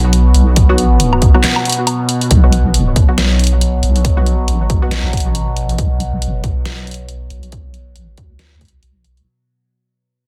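A half-time groove at 138 BPM with a 16th-note swing drives this dark, cavernous deep dubstep excerpt, where a punchy electronic kick and a dubstep kit of handclaps, hi-hat, woodblock and a deep snare sound re-recorded in a large room. Up front, a deep, soft wobble bass with a rounded sine-and-triangle tone and chorus anchors the low end, while a resonant sawtooth drone with moving overtones, phaser and its own reverb sustains chords underneath. A muted, detuned chord stab with cassette-tape grit and dub echo plucks through until 5.0 s; after a brief break, the track fades from 2.3 s as a filter sweeps across the wobble bass.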